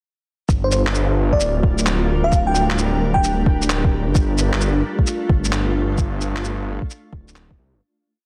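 A muffled two-step kick, a skittering shuffled beat of shaker and handclaps, and a menacing, saturated detuned saw bass with long gliding notes all enter at 0.5 seconds, opening this short, rainy and melancholic future garage piece in G minor at 131 BPM with a swung 16th-note feel. The bell-like FM electric piano adds sparkling short phrases through chorus, tremolo and analog delay until 3.5 seconds, while a blurred granular cloud pad with its own reverb breathes sustained chords under sidechain pumping as the harmony moves from Gm7 to F6/G. The dense, heavily limited mix fades out from 5.4 seconds to its close at 7.8 seconds.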